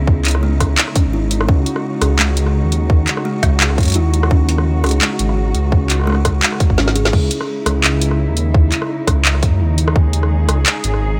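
A half-time, lightly swung 170 BPM drum and bass groove in C# minor drives this heavy, dark excerpt, where a tight, up-front layered kick and electronic kit with woody snare, metallic hats, handclaps, rim clicks and crash play alongside a deep, rumbling detuned saw bass with tube saturation, a veiled, con sordino cello section holds lush sustained chords with sidechain pumping, and a buzzing, hollow-toned kalimba rings out delayed arpeggios until 7.1 seconds, just after a drum fill at 6.8 seconds where the kick drops out, all set in a digital ambience.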